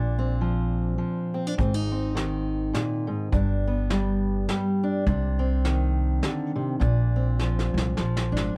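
A fingerpicked steel-string acoustic guitar provides the accompaniment in this short, hopeful and gentle acoustic folk excerpt, its fresh strings sounding warm and close, with a touch of finger squeak. An upright bass played pizzicato sits up front beneath it, woody and thumpy, while a soft brush drum kit joins at 1.6 seconds with hi-hat, a medium-tuned snare and a tight kick, carrying a distant, small-room character. The tune moves at 103 BPM in a swung 3/4 in Bb mixolydian, drifting through Bbadd9, Ab, G and Cmadd9 before returning to Bbadd9. A drum fill arrives at 7.4 seconds as the passage closes. The sound is dry and intimate, with little reverb.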